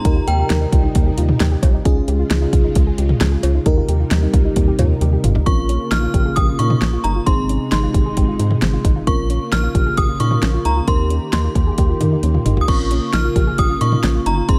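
Wistful and nostalgic, this synth-pop excerpt at 133 BPM rides an up-front deep house drum kit with a deep kick, fat snare, metallic hats, cowbell and toms (fills at 5.0 and 12.2 seconds) and a rubbery, bouncy square bass, under a lush FM electric piano with a soft pad layer, warbling vintage string-machine violas and a soft, round arpeggiated pluck in the background, while an inharmonic, ringing synth chime with ensemble chorus and delay sounds briefly at the start and returns at 5.5 seconds to carry the melody over chords moving through Bbm, Ab and Eb in a dry room.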